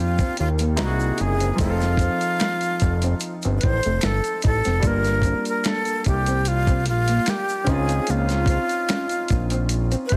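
Soulful and late-night, this R&B and neo-soul excerpt moves at a relaxed 74 BPM with a light sixteenth-note swing, as an up-front, breathy jazz flute with vibrato carries the melody over an intimate grand piano whose action noise can be heard, and a fat, nasal analog bass sits thick and saturated beneath. A gritty, sampler-style drum kit with a thumpy kick enters at 0.2 seconds alongside a slightly broken-up electric guitar second line and a tube shaker with finger snaps, both tucked into the background. The harmony drifts from Ebmaj7 through an altered C7 and F7 toward Gm7 and a closing Dbmaj9, all within a dense, heavily limited modern master.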